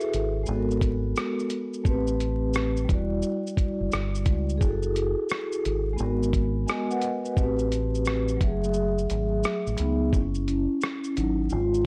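This lo-fi hip hop excerpt moves at 87 BPM in 4/4 with a swung sixteenth-note feel, and its mood is melancholic and reflective. A vibraphone played with soft mallets carries the harmony through minor-ninth chords such as G#m9, Am9, Em9 and F#m9. Its tone is mellow, ringing and vintage, with a slow motor vibrato and a low-pass filter that leaves it band-limited. A dusty, sampler-style drum kit sits up front, compressed and gritty, with a thumpy kick, hi-hat, rim click and shaker. A deep, dark, round fingered electric bass holds the low end. The kick drops out from 8.7 to 10.1 seconds, and then the vibraphone takes a solo over an F#sus2 chord. The dry sound has little reverb, with hardware grit and vinyl crackle across the mix.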